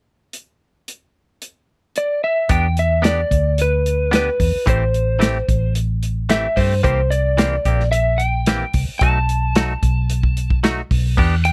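Soul blues in E minor at 111 BPM, with a straight feel and a mournful, brooding mood, cut from a longer piece. An acoustic soul drum kit opens at 0.3 s with tight kick, medium-tuned snare, hi-hat and crash, its dark cymbals and rolled-off top sitting up front in a small room. At 2.0 s a slightly broken-up electric slide guitar, played with fingerpicks and compressed, takes the melody between B4 and A5. From 2.5 s a round, foam-muted fingered bass joins low in the mix's foreground, while a bright, twangy clean guitar recorded direct adds picked, scooped stabs with a vibrato effect. The chords move from Em7 to Am7, then C7 and B7, over a dry, close recording in a 1970s studio style.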